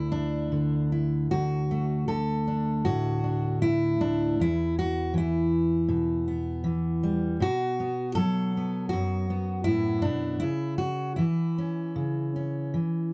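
A full-bodied, up-front fingerpicked steel-string dreadnought guitar plays alone through this short folk excerpt, a nostalgic piece in D major at 79 BPM in a straight 4/4, tuned slightly sharp to A4 = 444 Hz. After a brief opening on Dsus2, the harmony moves through D, Em, B5 and a rootless A/C#, with the guitar ranging from its low D2 up to A4. A moderate small-room reverb and a dark, warm production give the instrument an intimate, close presence.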